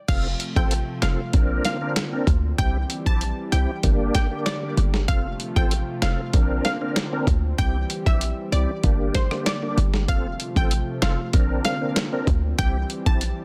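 A straight 4/4 dancehall groove at 96 BPM in F major drives this bouncy, sunny excerpt, built on a gritty, overdriven sampler-style drum kit with thumpy kick, snare, rim click, handclaps, hi-hat and crash, and a punchy, tight 808-style bass, both sitting up front. Above them, a round, detuned sawtooth analog pluck carries the melody through chorus and tape echo. A reedy tonewheel organ with key click, chorus vibrato and a slow rotary speaker plays accompaniment, and a smooth, warbling vintage pad holds sustained chords, the organ and pad both pumping from sidechain compression, as the chords cycle F, Bbadd9, C and Gm under digital ambience and a dense, heavily limited modern master.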